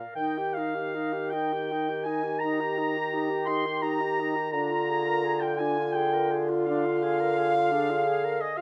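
A rubato 12/8 feel at 56 BPM carries this tender, slow romantic movement for wind quintet in Eb major, cut from a longer piece, where the pure, vibrato-touched concert flute sings the melody over the oboe's distant second line, the soft-attacked clarinet accompaniment and an up-front bassoon bass, while the roomy French horn joins at 2.4 s before the harmony moves from Eb to Bb7/D at 4.5 s, all set in a dark, warm production with moderate large-studio reverb.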